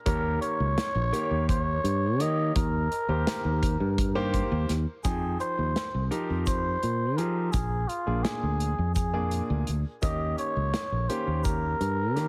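Progressive instrumental band music in a driving, brooding 7/8 at 169 BPM (eighths) in F minor, this excerpt puts a veiled, raspy cup-muted trumpet with light vibrato and tape echo up front on a jazz-style melody over a clear grand piano that adds a fill from 4.0 to 5.0 seconds, a warm fretless electric bass and a punchy small-room country drum kit, with a grainy tube shaker joining in the background at 5.0 seconds, all under light reverb and a heavily compressed radio sound.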